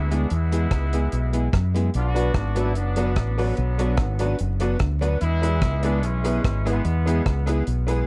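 Ska with a mischievous, driving swing, built on a round, up-front fingered electric bass and a dry reggae drum kit of tight kick, hi-hat and rim click, while a hollow-body archtop guitar sits in the background with dub echo, a clear, tight horn section with light vibrato carries the melody through dub echo and plate reverb, and a jangly, detuned honky-tonk upright piano enters with stabs at 2.1 seconds, the whole mix set in a dark production flecked with vinyl crackle.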